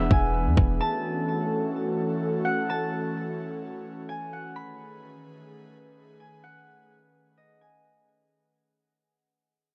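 An atmospheric cloud-rap hip hop excerpt opens on a fingerpicked concert harp, a breathy pad and a deep, boomy 808-style bass, with a hard-clipped electronic kick arriving at 0.1 seconds. It moves at 128 BPM in 4/4 with a half-time feel, and its mood is spacious and ethereal. The bass and kick sound only through the opening break, with the mellow, sine-toned bass having a fast attack and decaying tail over an E7 chord before it stops at 0.8 seconds. From there, the soft, detuned pad carries sustained chords through F#m7 and B13, its slow attack, long release, noise layer, chorus and sidechain pumping sitting up front until 8.3 seconds. High above it, the acoustic, ringing harp plays the melody softened by a low-pass filter and trailed by delay, lasting to 9.2 seconds. The whole passage fades out, and its light reverb and worn, warbly cassette-tape character lend a drifting pitch and a dulled top end.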